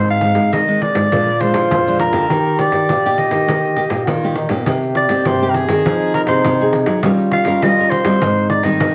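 A straight 4/4 samba-choro pulse at 101 BPM carries this lively, playful fragment of a longer piece, with a jingly pandeiro entering at 0.1 s and two fingerpicked nylon-string guitars, one playing accompaniment chords and one holding down a full-bodied bass line with audible finger squeak. Up front, a raspy, growling soprano saxophone sings the melody with vibrato, scooped notes and a slapback echo, while an intimate, breathy trombone with a soft attack adds a mellow second line. The harmony moves through Eb major before shifting to C minor at 4.7 s, all set in a moderate large-studio reverb that gives the vintage-toned saxophone and percussion a gentle sense of space.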